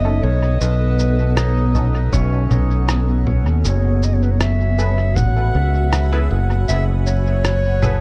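Meditative and spacious, this ambient dub fragment at 79 BPM in F# dorian floats a mellow classical-style clarinet melody with tape echo over a cloudy, evolving granular pad and muted, detuned chord stabs soaked in lush chorus and dub echo, while an up-front fingered electric bass anchors the low end, muffled, pitched-down sampler shaker, rim click and congas with dub echo arrive at 0.6 s, a thumpy electronic kick sits in from 2.1 s to 5.3 s, and a bright, clean pedal steel guitar adds slide arpeggios with volume swells and tape echo, all in a dark, warm digital ambience as the harmony moves from B9 to F#m11.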